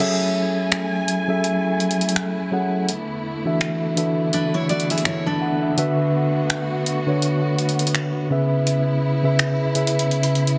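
A mellow tine electric piano sits up front with a clean, speaker-colored tone, carrying the chords of this moody, longing contemporary R&B excerpt over a lush bowed string section whose vibrato, portamento and smooth top add expressive depth. A crisp, sampler-style 8-bit drum machine with a small-room, tape-tinged character lays down finger snaps, hi-hat and crash cymbal with a gentle sixteenth-note swing, its snare softly clipped. Briefly, from 4.3 to 5.8 seconds, a full-bodied picked steel-string acoustic guitar adds tape-echoed arpeggios, all within light digital reverb and a dense, heavily limited modern master.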